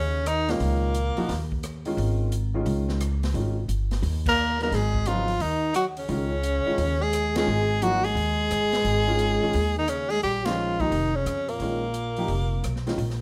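Intense and spiritual, this modal jazz excerpt swings at 174 BPM in 4/4, moving from G#sus4 to a Bbm11 colour at 10.2 seconds, with band accents hitting at 4.2, 7.3 and 10.4 seconds. A bright, up-front tenor saxophone carries the melody with vibrato and a soft attack, bathed in plate reverb, while a dark trombone shadows it below with light vibrato and scooped notes; both horns sound briefly at the start, then return at 4.3 seconds. Underneath, a woody pizzicato upright bass sits up front, an intimate concert grand piano with audible action noise and deep bass accompanies, and an airy, polished big-band kit with a punchy kick, ride, hi-hat, rim clicks and crashes drives the swing in a light reverb.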